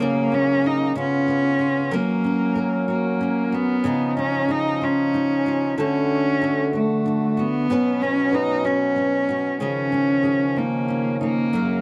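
A tender, heartfelt pop ballad in a gentle 6/8 at 63 BPM opens with all three parts at once: a rich, bowed cello carries the melody up front with smooth vibrato, while a double-tracked, fingerpicked flamenco guitar supplies accompaniment, complete with audible finger squeaks. Beneath them, a mellow, reedy accordion holds sustained chords as the harmony moves from F# through C# to a striking D and a Bsus2. The sound is dry and close, like a 1970s studio with light reverb, and this excerpt is cut from a longer piece.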